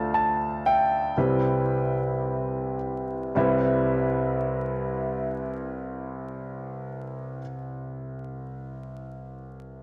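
Folk in C major at a slow 52-60 BPM, this intimate, hopeful fragment of a longer piece features a clear concert grand piano carrying the melody up front with deep bass, audible action noise and cassette tape coloring, easing from Dm7 to Cmaj7 while it slows through the first 3.4 seconds, all set in a lush hall reverb on a home cassette recording flecked with vinyl crackle.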